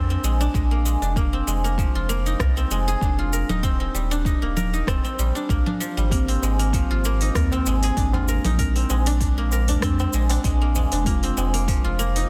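A silvery, fingerpicked guzheng rings up front with delayed arpeggios in this earthy organic downtempo excerpt at 97 BPM in Bb mixolydian, with a lightly swung 16th feel over chords moving from Bb7 through Fm, Ebmaj7 and Abmaj7. A round, mellow sine sub bass and a deep, layered electronic kick anchor the groove, while a produced deep house kit of cabasa, congas, smooth hi-hat and rim click adds studio reverb and a softly clipped snare. At 6.1 seconds, muted, warbling felt-like synth keys enter in the background with chorus, delay and sidechain pumping, joined at 6.4 seconds by a low-tuned, close and dry tabla, all inside a small room and a dense, heavily limited modern master.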